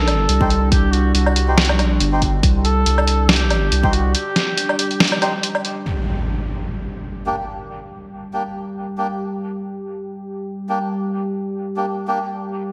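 A reedy, nasal melodica carries stabs with dub echo from 0.4 to 12.2 seconds through this cavernous, brooding deep dubstep excerpt at 140 BPM, its half-time feel swung over a sawtooth ambient pad that sustains dark, chorused chords. A distant duduk sings a vibrato-laden, scooped folk melody through a low-pass filter and dub echo, while a round sub bass, a layered electronic kick and a muffled, pitched-down sampler kit of hi-hat, snare and woodblock with gated reverb drive the drop, which gives way to a break at 4.1 seconds. An up-front electronic impact lands at 5.9 seconds as the rhythm falls away, leaving pad and melodica in a lush hall reverb with bright 1980s-style digital sheen.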